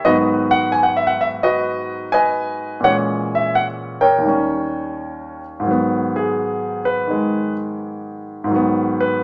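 Solo jazz in G# minor at 86 BPM in 4/4, cool and swinging with a 68% swing on the eighths and a rubato feel, this short excerpt from a longer piece features a clear, natural, up-front baby grand piano, tuned to A4 = 444 Hz and ranging from D#2 to G#5, moving through G#m7, A#m7b5 and D#7 before returning to G#m7 as a new section opens at 5.7 seconds, all set in a moderate large-studio reverb.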